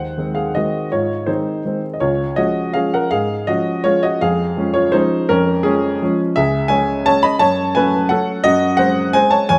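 A present, up-front baby grand piano sits in a moderate recital hall reverb, its tone warm and close while the room adds a gentle halo of roughly 1.5 seconds. This is a short cut from a longer classical piano waltz in Db major and 3/4, moving at a lively 155 to 180 BPM with an elastic rubato feel. The piano plays solo throughout its 9.6 seconds, covering a span from Db2 up to B5. The harmony opens on Ab7 over Eb, settles onto Db at 2.0 seconds, and then passes through Db over F before shading into C#m, F#m and G#7 over F#. The mood is wistful and elegant, with the graceful lilt of a salon dance touched by melancholy.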